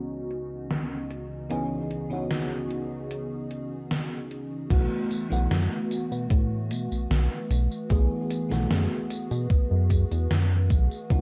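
A woozy, hazy vaporwave fragment at 75 BPM opens on a lush, dreamy FM electric piano with a soft pad layer, its phaser, subtle chorus and tape echo floating over a warbling, nostalgic tape-like pad that holds sustained chords in a dark haze, all under a filter sweep through the first 4.7 seconds. A gated 80s digital drum machine joins at 0.3 seconds with crash cymbal, hi-hat, snare and tambourine, its gated reverb snare roughened by overdrive and 12-bit sampler grit and re-recorded in a small room. The harmony rests on C#m11 before moving to B7sus4 at 4.7 seconds, where a glossy, nasal chorused synth bass with tube saturation and a thumpy, overdriven electronic kick arrive together, both sitting up front. The whole is a cut from a longer piece, tuned slightly flat to A4 = 436 Hz and given a dark, low-passed cassette sheen with light reverb.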